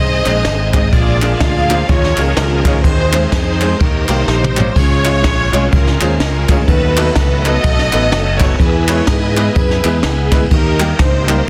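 A swung 125 BPM groove in 4/4 drives this reverent, soulful uptempo gospel excerpt, where an intimate bowed string section carries the sul tasto melody with vibrato over shouting, lightly overdriven tonewheel organ chords turning on a slow rotary speaker in the background, a round fingered electric bass, a clear concert grand piano with audible action noise, an up-front brush kit with a punchy kick, dark cymbals, a high-tuned snare and a drum fill at 4.3 seconds, and crisp group handclaps, all in small room ambience with a dense, heavily limited modern master.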